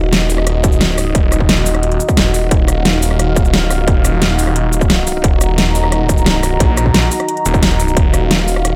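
A digital ambience frames this excerpt of dark technical drum and bass, a futuristic and aggressive piece in a straight 4/4. A snarling, detuned sawtooth bass growls up front with distortion and tube saturation, while a moody analog pad holds sustained chords underneath with chorus and sidechain pumping. The drum kit brings a huge snare, metallic hats, rim clicks and shaker, and a distorted, layered electronic kick joins at 0.6 seconds and drops out between 7.6 and 8.0 seconds.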